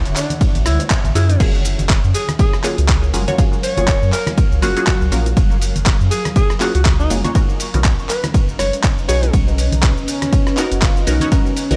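An echo-heavy, lightly reverberant deep house excerpt at 121 BPM in F# major with a sunny feel, where a breathy, intimate alto saxophone sings over a punchy electronic kick, a gritty sampler-style kit of hi-hat, claps, rim click, shaker, ride and crash, background congas and bongos, a round, deep analog bass and filtered dub chord stabs with phaser, the bass and stabs pumping alongside a cloudy granular pad that pumps too, while a faint silky string machine drops out at 1.4 seconds and a horn-like synth lead with chorus and 12-bit grit enters at 10.1 seconds.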